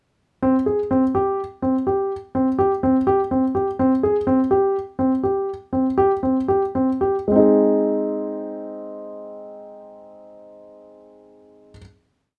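This contemporary instrumental is a short, complete piece for solo concert grand piano, playful and hopeful in mood despite the instrument's dark, mellow voice. Set in Ab major and a straight 7/8, it moves briskly at 225-252 BPM counted in eighths, with the piano entering at 0.4 seconds on an ostinato built over a rootless Abmaj7. The playing sits up front and intimate, close enough that the action noise of the instrument is audible alongside its deep bass and a vintage character. From 3.8 seconds the tempo slows, easing the figure toward its close. At 7.3 seconds the piano settles onto a plain Ab chord that rings out under light reverb to finish the piece.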